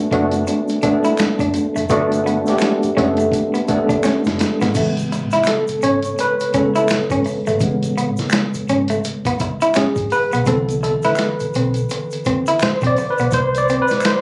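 Captured on a phone in a club-like room, this compressed, soulful and sensual neo-soul R&B fragment with a swung feel sets a worn, slightly out-of-tune, lightly overdriven tine electric piano up front over a dark, slightly broken-up electric guitar through a small old amp, a round, punchy foam-muted fingered electric bass, a gritty sampler-style boom bap drum kit with a thumpy kick and finger snaps, and a band-limited egg shaker and handclaps in the background, with a drum fill at 4.0 seconds leading into an electric piano solo from 4.8 seconds.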